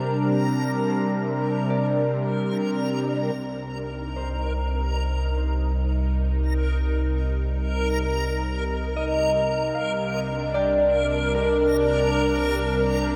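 A vast, wet reverb with an eight-and-a-half-second tail surrounds this reflective, spacious ambient excerpt in C minor, moving slowly at 75 BPM in 4/4. A smooth, detuned sawtooth pad with chorus sits up front, holding sustained chords from Gm/C to Cm7 and back, and it fades in from 3.3 seconds onward. Above it, a reversed, granular texture hovers high and dreamy with its own reverb, while a very quiet, organ-like drone of sine and triangle tones with ring modulation and ensemble chorus hums beneath until about 3.4 seconds. A concert harp enters at 0.9 seconds with fingerpicked, ringing arpeggios that trail through tape echo. At 3.3 seconds a round sine sub bass arrives on a low C, deep and up front, fading out across the rest of the passage.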